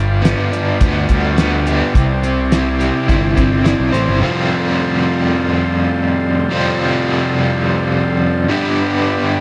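Dark and trippy, this psychedelic rock excerpt moves at 105 BPM in a straight 4/4, built on a bright, double-tracked crunchy guitar riff treated with tremolo and dub echo and a round, punchy fuzz bass, over a cloth-damped drum kit with a fat snare, tight kick and rolled-off top in a small room. The bass and drums drop out around 4.2 s as the chords shift from G7 and Cadd9 to Fadd9, leaving the guitar and a reedy vintage combo organ with light vibrato holding sustained chords in the background through to a G at 8.5 s. Moderate spring reverb gives the echo-heavy mix a hazy sheen.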